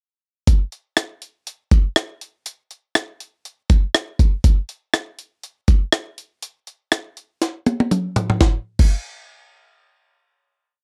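A lightly swung 4/4 groove at 121 BPM drives this short, dramatic and nostalgic pop piece, carried entirely by a jungle-style sampled drum kit of kick, snare, hi-hat, rim click, toms and crash cymbal that sits up front with a big backbeat. The kit sounds gritty, compressed and pitched up, with a thumpy kick and a high-tuned snare, all captured in a dry, close 1970s-style studio sound. After a verse beginning at 0.5 seconds, a drum fill arrives at 7.4 seconds and leads into a final hit at 8.4 seconds.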